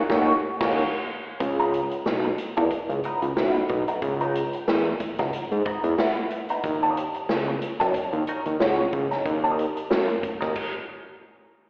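A full-band accent opens this hypnotic, cool funk fragment at 92 BPM in C# dorian with a 16th-note swing, where a fat, detuned sawtooth bass with a filter sweep sits up front beside a punchy, natural-sounding big-band drum kit, while a bright, twangy clean electric guitar colored by wah and slapback echo accompanies chords moving from D#m7 to C#m9 and back, the mix heard as a live gig through the venue's PA with lush hall reverb and a telephone-like tone until a stop at 10.6 seconds.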